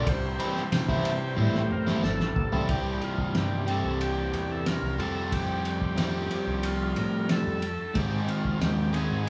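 A straight 4/4 groove at 91 BPM drives this hypnotic, hazy psychedelic rock excerpt in C mixolydian, moving from C to Fsus2 at 5.0 seconds and Ab at 8.0 seconds. A cloth-damped, thuddy drum kit sets the pulse with a tight kick, fat snare, toms and dark ride cymbal, its muffled, lo-fi sound saturated and gritty, and it plays a fill from 1.4 to 2.7 seconds. Up front, a crunchy, double-tracked overdriven guitar plays a bright picked riff, while a growling fingered bass with overdrive adds punchy low weight. A buzzy vintage combo organ carries the melody with light vibrato, and a reedy, breathing harmonium holds sustained chords in the background until 2.7 seconds, when the piece moves into its second section. A very quiet, shimmering tanpura drone and a distant, jingly tambourine sit beneath it all, and a moderate large-studio reverb gives the feel of a band playing live in one room.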